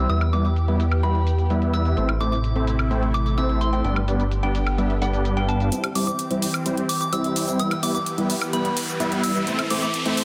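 A straight 4/4 pulse at 128 BPM drives this euphoric, triumphant festival progressive house excerpt in C major, with overdriven electronic hi-hat, shaker and woodblock under huge, detuned supersaw chords, a fat, nasal analog bass that stops at 5.7 seconds, a slow-attack lush unison pad and a pure FM synth bell melody carrying chorus, phaser and tape echo. The chords move through Em, Am, G and C, and a build-up begins at 5.7 seconds as a filter sweep runs across the supersaw riff, joined at 7.1 seconds by an electronic riser. Light digital ambience surrounds the mix, which has a dense, heavily limited modern master.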